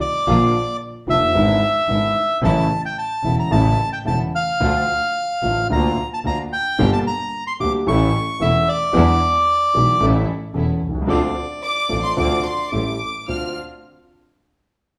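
Sultry and passionate, this rubato tango in D minor moves at about 111 BPM in a fragment of a longer piece, with a reedy, airy bandoneon carrying the melody up front from the start. A dark concert grand piano with audible action noise and deep bass accompanies alongside a focused, bowed double bass with vibrato, while a distant symphonic string section adds smooth stabs in the background, and a close, gut-string violin section enters at 11.6 seconds with a second line. The band plays live in one room bathed in wet large-studio reverb, as the harmony moves through chords such as Bb, E7/G#, Dm and Gm before reaching A7 and Dm7.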